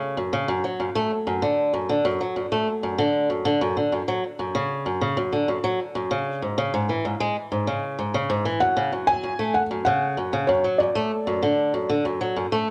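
A straight 4/4 pulse at 96 BPM carries this playful, delicate folktronica excerpt, where an up-front, dark and boxy fingerpicked swing-style acoustic guitar with finger squeak plays arpeggios over F#m, D/F# and G#sus4 in a small room, joined from 8.6 to 12.0 seconds by a soft, felt-muted upright piano melody with audible action noise, both parts touched with tape echo.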